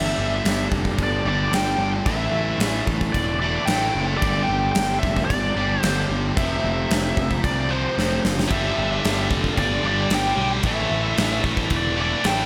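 A biting, overdriven lead guitar with plate reverb and digital delay opens this driving, heavy hard rock excerpt at 112 BPM in 4/4, over a cranked stack guitar riff, a fuzzy, punchy picked bass up front and a very quiet, gritty tonewheel organ holding sustained chords through a slow rotary speaker; a big acoustic drum kit with a punchy kick, crash and medium-tuned snare in a bright stone room enters at 0.5 seconds, and after a drum fill a second high-gain distorted guitar riff joins at 8.5 seconds.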